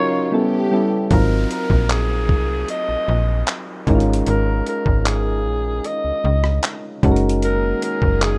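Contemporary R&B with a tender, dreamy mood, cut from a longer piece. It opens on a short break where a lush, bowed studio string section holds sustained chords under soft, round electric-piano-like synth keys with a shimmer of chorus, while a growling alto saxophone sings the melody with raspy, vintage vibrato and a touch of digital delay. At 1.1 seconds the strings drop out and a dusty, sampler-style drum kit arrives with a thumpy kick, hi-hat, rim click and handclaps, joined by a snappy FM bass with a metallic attack. An electronic downlifter sits in the background through this passage, and the strings return at 7.4 seconds to close out the section. The harmony moves through lush extended chords such as Ab13 and Gb69, and the whole thing carries the digital ambience and roughness of a home demo mix.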